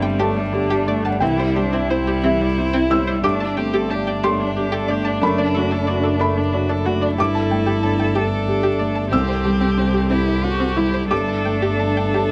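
A felt-muted upright piano, soft and intimate with audible action noise, carries this tender, hopeful neoclassical fragment at a slow, rubato 61 BPM in 6/8, sounding together from the start with a rich bowed cello singing a second line with vibrato and portamento, a distant viola, a focused bowed double bass, a reedy, breathing pedal harmonium in the background, and a twangy, warbling resonator pluck spinning bright arpeggios through chorus, phaser and tape echo, all over chords circling Gsus2, C and D/F# in a dry setting.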